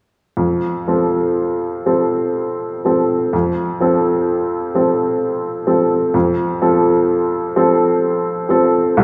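Classical in F major, this serene, lyrical fragment moves at 63 BPM in a rubato 3/4, cut from a longer piece and tuned to A4 = 438 Hz. A clear grand piano plays accompaniment from 0.4 to 9.0 seconds, ranging from C2 to A4 and sitting present and up front, resting on an F chord. The sound carries a wet recital hall reverb with a 1.7-second decay, captured in a church or concert hall.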